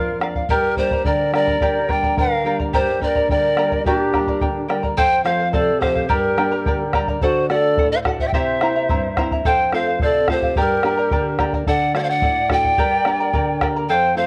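Earthy and melancholic, this Andean folk excerpt in a straight 2/4 carries an airy, up-front pan flute melody with chiff, vibrato and a slapback echo over a distant, reedy large quena second line, a shimmering fingerpicked charango with double strings, a dark classical nylon-string guitar with finger squeak, and a round, saturated bombo, the ensemble sitting in light reverb as a new section arrives at 5.0 s.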